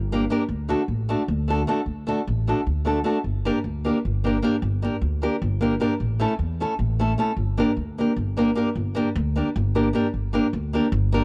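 A bright, small-sounding nylon-string guitar, fingerpicked on fresh strings and placed up front, carries the accompaniment in this restless, bittersweet Balkan wedding-band excerpt, moving through D, G minor and A in G Hungarian minor at 305 BPM in eighths and a straight 7/8. Underneath, a pizzicato upright bass with steel strings gives a woody, low foundation, also close and up front. The dry, close studio sound has a 1970s character, tuned slightly high at A4 = 441 Hz.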